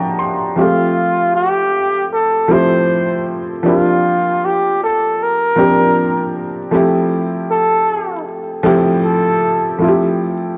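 A worn, woody, slightly detuned upright piano opens with a short fill before settling into accompaniment over Bb6 and Fmaj9 chords in F major, setting a cosy, nostalgic hip hop groove at 78 BPM with a gentle 16th-note swing. At 0.6 seconds a bucket-muted trumpet enters with a veiled, breathy jazz melody, its scooped notes and light vibrato softened by tape echo. Cassette tape colour on both instruments, vinyl crackle and a wet spring reverb give this home-recorded fragment an intimate charm.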